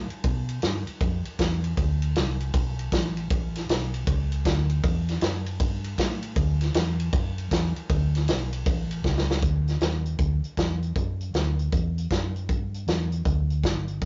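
This short piece, cut from a longer one, has a rough rehearsal-room sound, with tube saturation, moderate studio reverb and a dull top end that stops at 7.5 kHz. It is a rollicking, swaggering electric blues shuffle in D major at 157 BPM in 4/4, with a swing of 64% on the eighth notes and tuning set to A4 = 444 Hz. A vintage muted, fingered electric bass carries the low end from G1 to B2, sounding dark, amped, foam-muted and round. An acoustic country drum kit sits up front in a natural studio room, playing hi-hat, ride cymbal, a medium-tuned snare and a punchy kick. A drum fill from 9.0 to 9.4 seconds leads into a new section that runs to the close at 14.1 seconds.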